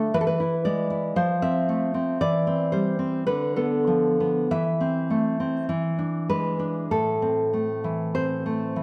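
A dark, fingerpicked nylon-string guitar sits up front in this wistful, passionate romantic classical excerpt, playing with rubato in 2/4 between A2 and E5, with an audible finger squeak and a wet recital hall reverb around it as the harmony moves from E7 through Fmaj7, C/E, Bm7b5/D, Am/E and E7 to Am at 6.9 seconds, over a span of 8.8 seconds.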